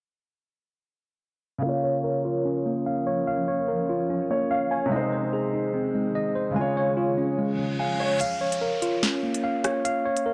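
A dry, gritty hardware recording with light reverb carries this ominous, cold excerpt of half-time drill hip hop at 146 BPM in Bb minor, moving through Bbm, Ab and Db under a filter sweep. From 1.6 seconds a dark, deep-bassed concert grand piano plays accompaniment with brief fills, beside worn, slightly out-of-tune tine electric piano arpeggios through analog delay, and at 2.4 seconds a cloudy, blurred granular pad begins sustaining chords in the background. A reverse cymbal and downlifter arrive at 7.5 seconds, and at 8.2 seconds an up-front electronic drill kit enters with a sharp snare, crisp hi-hats and rim clicks.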